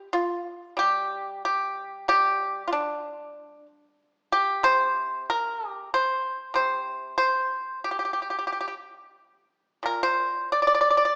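A solo pipa, plucked with fingerpicks and sounding dry, percussive and up front, carries this elegant, longing Chinese traditional excerpt in free, rubato time across a range from Bb2 to D5, set in a moderate recital-hall reverb with a small-speaker character.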